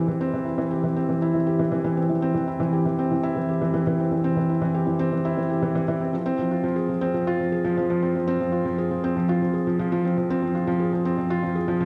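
A straight 4/4 pulse at 119 BPM carries this cinematic, intimate electronica excerpt, where a soft, mellow felt-muted upright piano plays alone from E3 to Ab4 with a vintage, up-front tone and analog delay, set in a dreamy mix soaked in a plate reverb whose tail runs 2.4 seconds, and builds from 6.1 seconds to the cut at 11.9.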